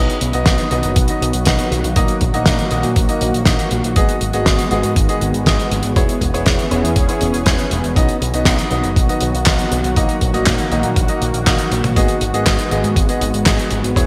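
Italo disco at 120 BPM with a danceable, romantic mood, this 14-second cut from a longer piece sets clear, boxy grand piano stabs with 12-bit sampler grit, digital delay and shimmer reverb over a lush, detuned sawtooth unison pad with chorus, a punchy picked electric bass through an envelope filter, a dry, mid-forward 70s drum kit with a fat gated snare, handclaps, hi-hat and toms, and an overdriven, thumpy electronic kick entering at 0.5 seconds, all moving through B, D#m/A#, G#m7 and E6 in a bright 1980s-style digital production with a lush hall reverb.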